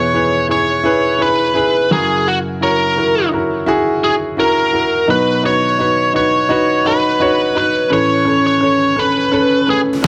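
Uplifting and hopeful, this short pop excerpt moves at 85 BPM in 4/4 with a straight feel in E major, drifting through E, F#7, B and Aadd9. A biting, overdriven electric lead guitar carries the picked melody up front, sitting between F#4 and C#5 until 9.8 seconds, while a concert grand piano supplies smooth, vintage-toned accompaniment with deep bass reaching down to E2. The pair sits in a wet studio reverb with a short 0.6-second decay.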